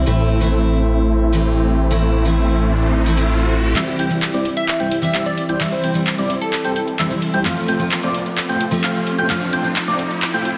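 Uplifting and anthemic, this festival progressive house passage opens on a bright, full-bodied picked steel-string acoustic guitar with delay, huge lush supersaw chords and a thick, menacing detuned saw bass, while a background riser enters at 2.0 seconds before a build-up at 3.8 seconds brings in up-front big-room drums with handclaps and metallic hats, a bold unison lead playing high arpeggios, a filter sweep on the supersaws and a brief crystalline wavetable pluck melody with chorus, all in a dense, heavily limited modern mix with light digital ambience.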